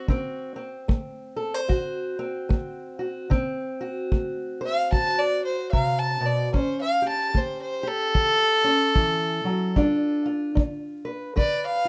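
A dark, woody fiddle with light vibrato carries a soulful, gritty acoustic country blues melody from the first moment, bowed up front over a boxy, fingerpicked parlour steel-string guitar and a tight kick drum played with brushes, all at a swung 74 BPM in D mixolydian as the chords move from D7 to A7 at 6.5 seconds and G7 at 9.8 seconds in this short cut from a longer piece, set in light reverb.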